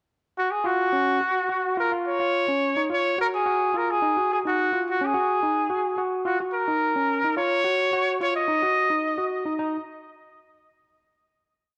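This short, complete afrobeat piece in Eb minor moves at a straight 108 BPM in 4/4 and has a hypnotic, defiant mood. A trumpet picks up the melody at 0.4 seconds, playing a solo line in a pop style built from sung-like motif phrases, its tone warm with vibrato, placed up front yet roomy, and trailed by tape echo. At 0.6 seconds an overdriven tine electric piano joins with a repeating arpeggio ostinato, its barky, gritty sound pushed through a combo amp. The groove sits on a single Ebm9 harmony throughout, giving the piece its trance-like pull. A moderate spring reverb and studio ambience surround the performance before the music settles into a final note from 9.6 seconds.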